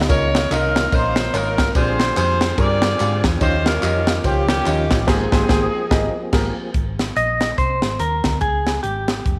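This uptempo gospel excerpt in Ab major at 144 BPM, swung in 4/4, opens with a very quiet tonewheel organ holding sustained chords through a slow rotary speaker with key click, over a dark, round hollow-body electric bass and a polished, up-front acoustic drum kit with a high-tuned snare, punchy kick and dark cymbals. Almost at once a bright saxophone section takes the melody with vibrato and slapback echo, while a warm concert grand piano with audible action noise and short sustain accompanies, and vintage, band-limited tambourine, tube shaker and group handclaps sit in the background. The harmony moves through rich chords such as Db69, Bb13 and Abmaj9, and the band hits accents from 5.1 seconds. After the horns, piano and organ fall away, a clean, twangy picked electric guitar steps up front with the melody at 7.2 seconds, carried by bass and drums to the end. A moderate echo chamber reverb gives the reverent, soulful performance an airy studio sheen.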